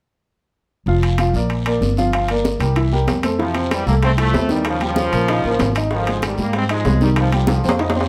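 A fast, festive salsa groove in straight 4/4 at 191 BPM starts at 0.9 seconds. Ringing, high-tuned congas sit in the background alongside a raspy guiro, joined by close, dry metal-shell timbales from 1.0 seconds, while a growly, dark pizzicato upright bass sits up front beneath a present, woody upright piano with short sustain moving through Bb, Gm7 and C7. At 3.4 seconds a brilliant, punchy trombone section takes the melody with vibrato and slapback echo, very quiet tight bongos enter, and the harmony shifts through Fmaj9, Eb9 and Abmaj7#11 to Cm before a drum fill closes this danceable passage in a moderate studio reverb.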